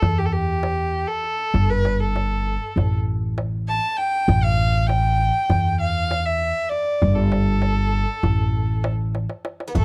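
This dry, close recording sits in a small room with the character of a 1970s studio, cut from a longer Turkish makam ensemble piece in 9/8 with a straight feel. The mood is hypnotic and melancholic. A single bowed violin carries the melody up front, its tone nasal, boxy, smooth and even, colored with vibrato. Beneath it, a pizzicato upright bass on steel strings gives a woody, dark and thumpy low end, also placed up front, while a clay-shell darbuka with natural skin sounds large and deep under hard hands. A drum fill runs from 9.2 seconds, and at 9.7 seconds a Greek bouzouki joins on a second line, bright and metallic, its picked double strings partly doubled at the octave.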